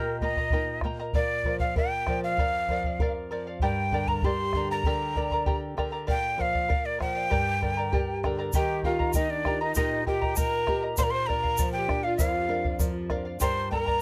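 A breathy, up-front cane quena sings a melancholic yet festive Andean folk melody at 98 BPM in 2/4 over shimmering fingerpicked charango and warm classical nylon-string guitar, joined at 0.2 seconds by a round bombo and at 8.5 seconds by a grainy egg shaker and a distant, reedy bamboo pan flute line carrying tape echo, all captured in a close, dry and detailed excerpt.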